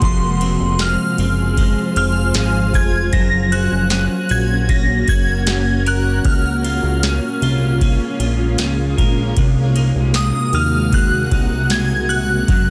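This dream pop excerpt opens at once with its full band, a blissful, floating groove at 77 BPM in a straight 4/4. A booming analog drum machine sits up front with a deep kick, crisp snare, ride cymbal and tambourine, its overdriven sound re-recorded in a small room. Beneath it, a fat analog bass blends sawtooth and square waves into a thick, detuned tone with a filter sweep, while a granular cloud pad holds blurred, evolving sine chords bathed in its own reverb. A clean, dark electric guitar picks arpeggios through analog chorus and tape echo, and a bright FM bell carries the melody high above, its shimmering, decaying notes haloed by ensemble chorus and tape echo. The harmony moves through Fm, Gb, Db6 and Ab7/C, all wrapped in digital ambience and a dense, heavily limited modern master.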